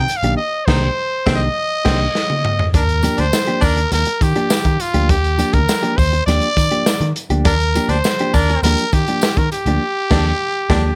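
Funk with a sly, hypnotic mood: a raspy, growling trumpet carries the melody up front over a gritty, saturated breakbeat kit with dark cymbals and a round, foam-muted picked bass, while a mellow, clean electric guitar and a jingly tambourine in the background fill out the groove. The trumpet opens with a solo over band accents from Cm9 before a drum fill at 2.2 seconds leads into Ebmaj9. A clear, distant baritone saxophone adds a second line in two passages, the later one starting at 7.4 seconds, and band accents return near the end of this dry excerpt cut from a longer piece.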